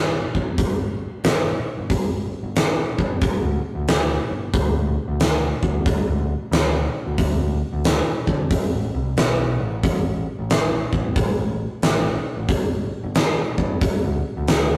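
A swung 4/4 groove at 91 BPM drives this gritty blues rock and southern rock excerpt, where a huge, up-front arena drum kit with a punchy kick, fat snare and hi-hat booms in a big room alongside a growling, overdriven picked electric bass ranging from G1 to D3, all captured as a rough rehearsal-room recording with light reverb and saturation.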